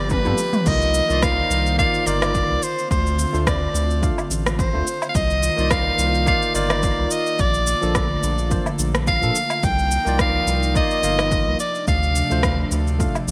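A clear, up-front soprano saxophone with vibrato and a soft attack carries a wistful jazz melody through this warm sunset chillout excerpt, floating over a breathy chorused pad, a barky tine electric piano, a round analog bass with tube saturation, and an overdriven deep house kit and punchy electronic kick that open with a short drum fill, all wrapped in bright 1980s-style digital sheen.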